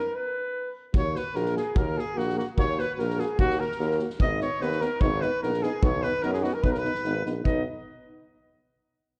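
A straight 2/4 pulse drives this festive, virtuosic Balkan brass band excerpt, which opens with a mellow flugelhorn and a clear alto saxophone before the rest of the band enters at 0.9 s over chords moving from D#m to G#m to B. Up front, the punchy, roomy flugelhorn carries the melody with the vibrato-tinged saxophone as a second line, while trombone and euphonium, each lightly wavering, sit in the background and a vintage-toned tuba anchors the bass. The soft-mallet drum kit of kick and medium-tuned snare sounds distant and rolled off at the top, all within a dark production with light reverb.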